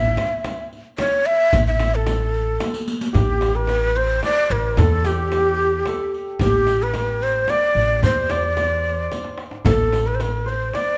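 Festive and warm, this Persian modal ensemble piece in A dastgah mahur moves at 111 BPM in a straight 3/4, with a breathy, unsteady ney carrying the melody up front with vibrato and tongued notes over a woody, growly pizzicato upright bass, while deep frame drum, tombak and a distant riq with dark jingles sit in the background, drum fills arrive at 2.6 and 9.1 seconds, and a shimmering, ringing santur enters at 3.1 seconds as a second line, all captured through close, detailed microphones with light reverb in a passage cut from a longer piece.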